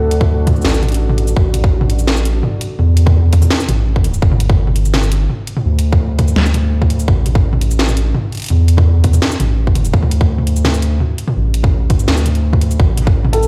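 A dark, detuned sawtooth pad with chorus, sidechain pumping and sub-octave depth briefly opens alongside a thick, saturated triangle sub bass in this cinematic, tense half-time drum and bass excerpt at 168 BPM, where a tight, overdriven electronic kick and an up-front, distorted kit of cracking snare, bright hats, shaker and toms drive through stone-room reverb until the pad returns at 12.8 seconds and a soft, felt-muted upright piano slips in a mellow arpeggio at 13.3 seconds.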